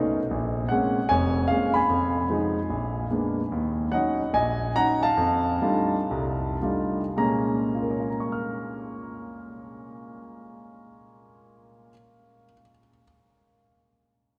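A long cathedral reverb, ringing for about 6.2 seconds, surrounds this solo jazz piano performance recorded in a church or concert hall. The concert grand sits up front with an intimate, natural tone, deep bass and long sustain, and the faint noise of its action is audible. The playing is cool and swinging, in 4/4 with a swung eighth-note feel and a rubato sense of time, moving between 103 and 152 BPM in Bb minor across a range from F1 to F6. The harmony opens on Bbm9, passes through Fm7b5 and Bb7b9, settles on Ebm7 and F13, and returns to Bbm7 at 7.2 seconds. The tempo slows between 3.5 and 7.2 seconds, and the piano plays for the full 13 seconds of this fragment cut from a longer piece.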